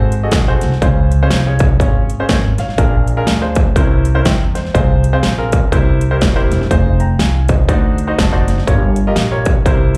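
An up-front dubstep drum kit drives this uptempo gospel excerpt, its distorted kick, huge snare and metallic hi-hats sounding electronic, layered and produced, with distortion on the kit, entering at 0.1 seconds. Underneath, an upright bass plays pizzicato with a woody, acoustic tone from its steel strings. A clear concert grand piano supplies the accompaniment with a natural sound and deep low end, touched by slapback echo, and steps forward with a short fill from 7.9 to 8.7 seconds. Set at 122 BPM in 4/4 with a swung eighth-note feel in F minor, the soulful, fervent passage moves through rich chords such as Ab7b9, Dbmaj7, C7b9 and D7b9 before ending on Gm7b5. The sound is that of a live gig heard through the venue's PA, dry overall with a hint of club reverb, and the piece is cut from a longer performance.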